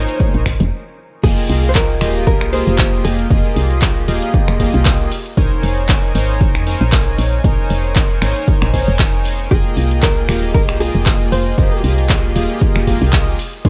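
Warm and hypnotic, this deep house passage, cut from a longer piece, rides a swung groove that opens on a filter sweep across a retro, glossy chorused polysynth whose stabs carry through to the end with sidechain pumping and dub echo. In those first moments a silky string pad glimmers very quietly, while a grainy tube shaker and bright, damped congas sit in the background before a brief break, after which the drop lands at 1.2 seconds. A punchy electronic kick anchors the mix, joined by an analog drum machine with crash, ride, hi-hat, handclaps and finger snaps, all with a small-room character. Underneath, a woody, round FM bass pumps in step with the sidechain, while a dark, clean hollow-body jazz guitar picks melodic phrases bathed in dub echo, returning near 9.5 seconds. The harmony sways between Bbm11 and Fm11, and the dry, close sound keeps the mix intimate.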